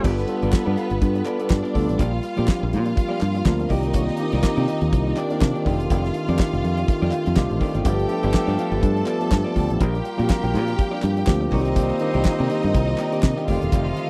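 A damped 1970s drum kit sits up front with a fat snare, tight kick and dark cymbals, driving this glamorous, sultry disco cut in C dorian at 123 BPM with a 16th-note swing, alongside a punchy, foam-muted fingered electric bass over chords such as G9, Cm9 and F13. A mellow tine electric piano carries the accompaniment and takes a fill at 6.9 seconds, while a lush, bowed string section with a smooth top plays a second line, a slightly broken-up, picked electric guitar and a group handclap sit in the background, and a distant, roomy French horn section holds sustained chords. After a brief touch at the very start, a mellow pop-style horn section with octave doubling returns at 7.9 seconds to add stabs, all captured in a dry, close 1970s-style studio sound.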